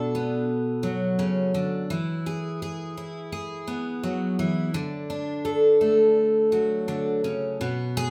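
A picked twelve-string acoustic guitar opens at once and carries this short folk fragment alone, cut from a longer piece. Its dreadnought body sounds full-bodied and up front, while the octave-doubled strings give a bright, shimmering ring, with a little finger squeak audible. The fingerstyle playing moves from Bm to E at 1.9 seconds and on to D at 4.7 seconds, a steady, straight-feeling progression in four. A moderate reverb from a large studio room surrounds the guitar, and the live-in-the-room capture keeps the mood intimate and reflective until the clip ends at 8.1 seconds.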